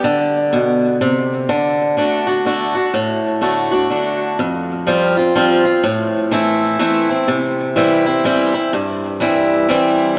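A dreamy, reverb-soaked sound fills this short excerpt, with a long church-like tail hanging around every note. At its center is a lone picked acoustic guitar, boxy and up front, its lines carrying a touch of delay. The piece is a heartfelt, easygoing country number in a lilting three-beat metre with a relaxed swing on the eighth notes. The guitar moves through G and D in its opening passage, then shifts at 4.4 seconds to a second phrase built on Fsus2, Am and C. The clip ends at 10.2 seconds, lifted from a longer piece.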